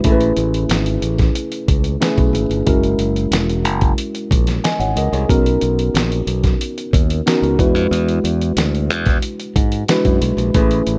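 A straight 4/4 groove at 92 BPM drives this glossy, upbeat slice of polished 1980s jazz-funk pop, cut from a longer piece, with a dusty soul sampler-style drum kit of hi-hat, thumpy kick and fat snare sounding gritty, compressed and tape-warm up front. A bright, growly fingered electric bass sits direct and forward beneath a mellow, worn tine electric piano that is slightly out of tune and bathed in lush chorus. All three play throughout the 11 seconds over Amaj9, F#7, Bmaj7 and E7, framed by a digital ambience.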